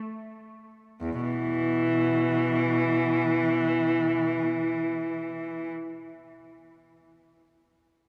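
Classical in style, this brief fragment cut from a longer piece is a free, expressive passage for unaccompanied cello, meditative and yearning in mood and unfolding in free time. A single bowed cello, clear and focused with vibrato, enters at 1.0 seconds and plays until 5.7 seconds, staying low in its range between E2 and E3. The instrument sits up front, its tone carrying a sense of longing. A resonant cathedral reverb surrounds the playing and lingers after the bow stops, filling the remaining moments with a spacious afterglow. The tuning sits slightly above standard pitch, at A4 = 441 Hz.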